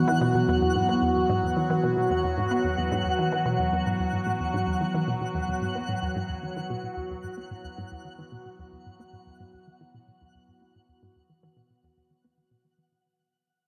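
A swirling, detuned sawtooth pad with phaser and chorus holds sustained Esus2 chords up front in this luminous, expansive piece of ambient, sequencer-driven space music at 111 BPM, joined by a juicy, squelchy blip-pluck riff with chorus and delay, a filter sweep on the synth arpeggio, and a faint twinkling granular FM shimmer up high, all soaked in a lush 2.9-second hall reverb and fading out across this 12.9-second cut from a longer piece.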